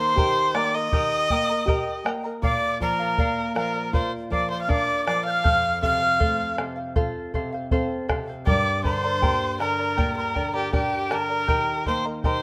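A straight 4/4 pulse at 80 BPM, set by a round bombo from 0.2 s, carries this melancholic, earthy Andean folk excerpt in G minor, where a clear, bowed erhu sings the melody up front with light vibrato and portamento over a breathy cane quena's soft-edged second line in the background, a shimmering double-strung charango and a dark, fingerpicked nylon-string guitar, moving through Eb, Bb, F and Gm in a rough home demo with light reverb and small-room ambience.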